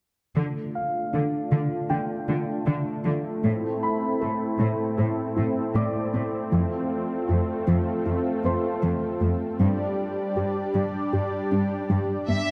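A straight 4/4 pulse carries this brooding, futuristic cinematic fragment, cut from a longer piece, as a smooth, detuned analog pad holds sustained chords through Dm, Am, F and G under a filter sweep, a mellow round pluck arpeggiates in the background with chorus and delay, a distant bowed cello section anchors the bass, a boxy grand piano adds delayed high texture from 0.8 s, and a lush, focused violin section touches a single melody note at 12.3 s, set in a moderate scoring-stage reverb.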